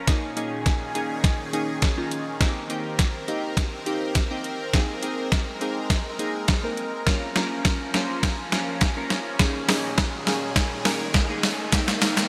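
Bright 1980s-style digital production bathed in lush hall reverb frames this confident, bittersweet dance-pop build-up, cut from a longer piece, where an overdriven 8-bit drum machine with thumpy kick, fat snare, hi-hat and shaker plays a fill up front through gated reverb. Glassy sine-tone keys with chorus, phaser and a filter sweep join a detuned sawtooth supersaw pad, both pumping under sidechain, while very quiet impact and riser effects flick in briefly at the opening and return at 9.3 seconds, all over chords moving from Eb7sus4/Bb through Cm7, Abadd9 and Bbm.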